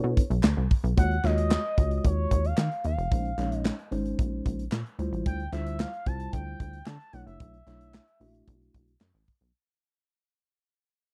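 This is a short, danceable cut of early-eighties boogie funk with a late-night mood, moving at 112 BPM in a straight 4/4. It opens on a plucky analog bass, a mellow tine electric piano and an expressive synth lead all sounding together, with the drum kit arriving at 0.2 seconds. The bass is punchy and funky, a wave-folded sawtooth-and-square tone with a filter pluck and a fast attack that sits up front. Above it, the electric piano plays clean accompaniment through its built-in speakers, while the smooth lead carries the melody with chorus, vibrato and a slapback echo. The polished studio kit brings a punchy kick, a medium-tuned snare, hi-hat and handclaps, and a crisp group handclap sits distant in the background of a large room. The chords drift through minor eleventh harmonies from Bm11 to Ebm11, Bbm11 and Dm11 in a dry, close 1970s-style recording, and the passage begins fading out at 1.0 seconds through to its end at 9.5 seconds.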